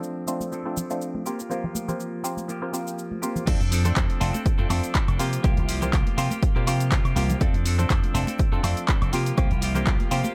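A lightly swung 16th-note groove in 4/4 drives this sunny, joyful stretch of filtered disco house, cut from a longer piece. A tape-warm analog drum machine with crash, handclaps, hi-hat, shaker and woodblock leads the rhythm, with a dry, close egg shaker and hard-hand congas in the background. A stringy, overdriven muted clav with phaser and a twangy, clean picked electric guitar riff carry the F6 and C7sus4 vamp, with gritty 12-bit sampler texture and low-pass filtering on both, during an opening filter sweep. At 3.5 seconds the drop arrives, as a punchy up-front electronic kick and a bright, amped slap bass with an envelope filter enter. Throughout, sidechain pumping gives the clav, guitar, drum machine and hand percussion a breathing bounce, which the bass shares once it joins, all in a dry, close mix.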